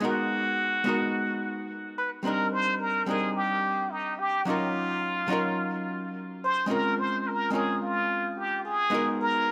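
From the opening moment, a plunger-muted trumpet with a brilliant, wah-wah bite and light vibrato carries a forceful jazz-style melody over a dark, clean, hollow-body archtop guitar, both touched with digital delay and set in a moderate plate reverb, in this wistful chillout fragment at 108 BPM with a swung sixteenth-note feel that moves through Abm9, Cm9, Ebm9 and Bbm9 over its 9.5 seconds.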